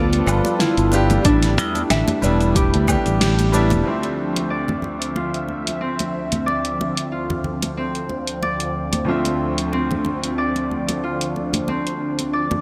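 Swung sixteenths in 4/4 give this wistful sunset chillout fragment a gentle lilt, as a tape-warm deep house kit with a fat snare, hi-hat, cabasa and woodblock sits over close, dry congas played with hard hands, and a deep electronic kick joins at 1.2 s. A dark, woody nylon-string guitar carries a thumb-plucked melody in the background with digital delay, while a growly, up-front fingered electric bass, a brilliant grand piano with long sustain, a lush detuned sawtooth pad treated with chorus and phaser, and a ringing fingerpicked harp softened by gritty 12-bit sampling and a low-pass filter move over G7 and A7sus4. A band accent lands at 3.2 s as the guitar melody ends, the bass drops out at 3.8 s, and the piano, pad, harp and percussion settle onto Dm7 in a light, small-room ambience.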